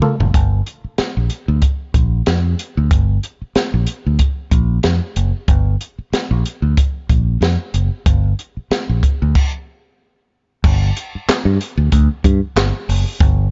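Sly and funky, this short cut from a longer funk piece opens on a quick drum fill from a compact cocktail kit, whose punchy kick, high-tuned snare, hi-hat, handclaps, toms and crash cymbal sound smooth and up front in a small room. A fingered electric bass joins at 0.2 seconds, direct and warm in its low register, over a lightly swung sixteenth-note feel. A stop arrives at 9.4 seconds before a new section begins at 10.6 seconds, all set in a dry, dark mix with a softened top end.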